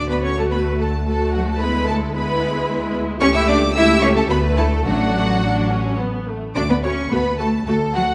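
A lively, spirited classical-period movement for string orchestra opens with a clear second violin line, warm violas in accompaniment, smooth, close cellos and an even, up-front double bass section, each bowed with vibrato. From 0.1 s, a rich, focused upper violin section carries the melody high above, and the music moves in a flexible triple metre with rubato. A wet recital-hall reverb surrounds the ensemble in this short fragment cut from a longer piece.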